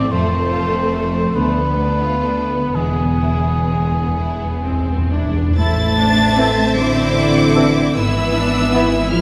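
Classical slow romantic movement for symphony orchestra in A minor, melancholic and elegiac, moving freely in 6/8 at 41-53 BPM, where a lush, vibrato-laden violin section sings the melody over a mellow cor anglais, a second violin line, rich violas, ringing harp arpeggios and focused cellos with distant double basses, a timpani fill sounds from 2.7 to 5.6 s, and at 5.6 s pure flutes and mellow sustained French horn chords join, followed at 6.4 s by a very quiet clear clarinet and a gentle bassoon, all bathed in the wet reverb of a scoring stage.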